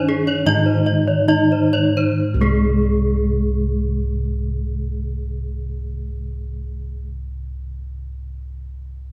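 Heard in a moderate concert-hall reverb, this short cut from a longer Balinese gamelan piece has a shimmering, brilliant character, its bronze metallophones ringing with the beating shimmer of paired tuning. In a straight 4/4 at 60-82 BPM, one metallophone carries the melody and another the accompaniment, while two more spin arpeggios above them, and the bossed gongs sit up front with a round, beating bass tone. The music slows over its first 2.2 seconds before moving into a new section that runs to 6.2 seconds.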